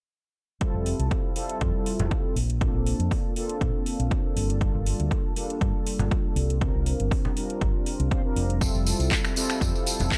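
A sunny, feel-good nu-disco groove opens at 0.6 seconds with a punchy electronic kick up front and a house kit of finger snaps, handclaps and metallic hi-hats, both overdriven, beneath a dark, round fingered electric bass and mellow, brassy synth brass of detuned sawtooth tone with vibrato, chorus, analog delay and sidechain pumping, moving through Fmaj9, Gm9 and C7sus4, while soft-handed congas and tambourine flick in at 2.0 seconds and return at 6.0 seconds, all set in a dry mix.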